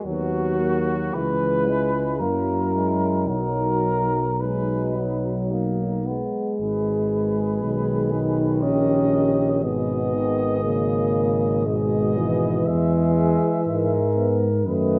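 A clear, distant trombone sounds first, joined at 0.1 s by the rest of the brass band in this slow, hymn-like classical piece in 3/4, moving with rubato at 53-61 BPM through a lyrical, warm mood in a roomy recital hall. A flugelhorn sings the vibrato-laden melody while a soft-edged French horn section carries a second line in the background, a mellow euphonium and the trombone fill the accompaniment, and a tuba sits up front on the bass. The music opens in B major and turns to G# minor at 6.6 s, the dark production and moderate reverb giving this passage from a longer piece a gentle glow.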